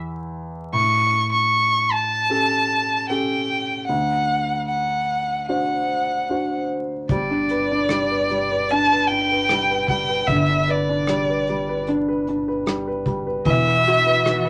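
Nostalgic and heartfelt, this acoustic folk-pop ballad opens on an intimate concert grand piano with audible action noise and deep bass, joined at 0.7 seconds by a smooth, bowed solo violin with vibrato up front, while a woody, thumpy pizzicato upright bass in the background and a soft brush kit with punchy kick, hi-hat and rim click both arrive at 7.1 seconds, and a distant, very quiet string ensemble slips in at 13.5 seconds on an Esus2 chord, the whole piece wrapped in small-room ambience and vinyl crackle.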